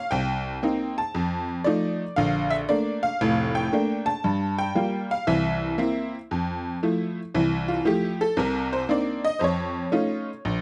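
A tack piano carries this short solo jazz passage on its own, its metallic, jangly tone sitting up front with a percussive bite and short sustain. The playing swings its eighth notes and moves through a sophisticated run of seventh chords, from Cm7 and F7 to Bbmaj7 before turning through Gm7 and C7. The piano spans a broad range, from deep bass notes up into its bright upper register, giving the part a vintage character. At 6.3 seconds the piece moves into a new section, where the solo takes on a honky-tonk flavour over Fmaj7, Cm9 and a closing Faug7. Light reverb and a dark, warm production surround the piano, lending the clip, cut from a longer piece, a warm, sophisticated mood.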